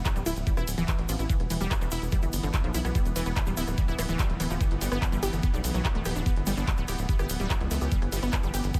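A knocking, up-front electronic kick drives this alien psychedelic trance excerpt at 145 BPM in E minor, alongside a tight, saturated sawtooth sequencer bass with a filter-pluck bite, a lush, warbling detuned unison pluck riff trailing dub echo, a swarming granular drone pumping under sidechain in the background, an electronic kit of handclaps, bright hi-hats, ride cymbal and rim clicks, and a grainy egg shaker, all moving from E5 to G5 at 4.6 seconds in a light digital ambience.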